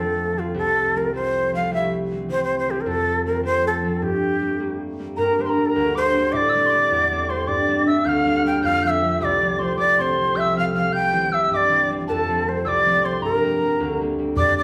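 A roomy, reverberant sound places a live band together in one large studio, in this spirited, driving Celtic jig cut from a longer piece. It moves at 104 BPM in a straight 6/8, in G dorian, with chords moving among F, C, Gm, Am7 and Gmadd9. An airy, bamboo shakuhachi carries the melody up front, its tongued notes marked by breathy chiff and expressive vibrato. Beneath it, a mellow concert harp is fingerpicked in the low and middle register, its ringing strings also close and prominent. At 5.2 seconds a pure, metal tin whistle joins high above with a second line, tongued and touched with vibrato and lifted highs. At 14.4 seconds a boomy, band-limited bodhran with a vintage, open tone sounds briefly just before the cut.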